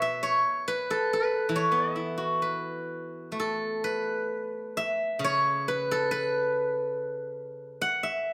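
Flowing and serene, this short cut from a longer Chinese traditional solo piece unfolds in a free, rubato 2/4 at around 63-70 BPM in the E zhi mode. A lone steel-string zither, played with fingerpicks, sits up front with a silvery, ringing tone across its span from B2 to F#5, captured by close, detailed microphones in light reverb, and its phrasing shifts to a new section at 3.4 seconds.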